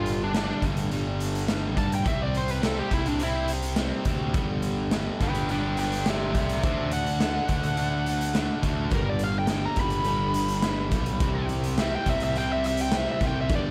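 Classic rock at 105 BPM in G major, confident and swaggering, this excerpt is carried by a bluesy, distorted lead guitar solo that runs throughout over a cranked, double-tracked stack guitar riff, a growly fuzz-driven picked bass and a raw garage drum kit with a boomy kick and a pumping stone-room sound. At 8.9 seconds a very quiet, shimmering octave-doubled twelve-string acoustic guitar joins with audible finger squeak, along with a barely audible lush string machine holding sustained chords. The mix sits in light reverb, with the drums and riff guitar up front.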